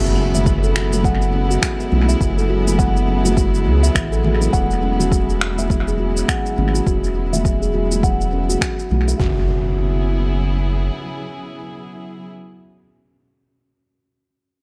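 A sul tasto chamber string section, round analog bass and ringing steel tongue drum open together under a very quiet electronic impact, setting a meditative, mystical organic downtempo groove with a swung feel, the strings and bass pumping to the sidechain while a filter sweep runs over the tongue drum's pure, tape-echoed arpeggios. An overdriven electronic kick, electronic shaker and finger snaps carrying analog delay, and congas and bongos in the background fill out the rhythm until about 9.2 seconds, when the drums drop away and a second impact arrives. The deep, nasal bass sits up front until about 10.9 seconds, and the strings sustain on beneath the fading impact until 12.3 seconds in this cut from a longer piece, all within a lightly reverberant, echo-heavy mix.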